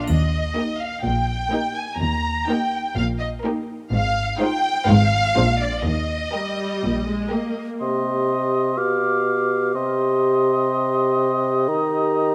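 Playful and quirky, this whimsical cinematic cue at 124 BPM opens in Eb major with an expressive, vibrato-laden violin section singing the melody up front over a lush viola section, a smooth-topped cello section and a clear double bass section, while a second, distant violin line hums in the background and a triangle glints briefly at the start, before the strings give way at 7.8 s to C minor, where an up-front mellow bassoon accompanies an airy, hollow flute, a warm oboe and a dark clarinet, all set in a moderate concert hall reverb.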